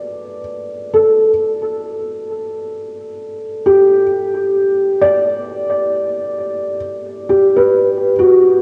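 A felt-muted upright piano plays alone from 0.0 to 8.6 seconds, its soft, mellow, intimate tone sitting up front and moving between F#4 and D5 over a single G chord, colored by cassette tape and analog delay. This peaceful, luminous ambient fragment in G major moves at a slow 66 BPM in straight 4/4, with the piano tuned to A4 = 439 Hz. A lush hall reverb with a 2.9-second tail surrounds the home cassette recording, which is cut from a longer piece.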